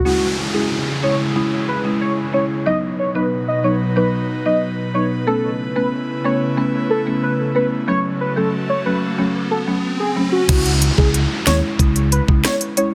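A dense, heavily limited mix with light reverb carries this tough, sultry dancehall cut in C# minor at 92 BPM, where a velvety synth lead with chorus and tape echo sings over a woody, soft-mallet folk marimba and an airy, breathy pad that pumps against the sidechain through C#m, B, Aadd9 and F#m. Electronic downlifter and riser effects run throughout, with a riser building from 7.2 seconds. At 10.5 seconds the pad drops out as a dark, round fingered electric bass and an up-front island pop drum kit arrive, its knocking kick, sharp snare, smooth hats, rim clicks and crash driving the new section.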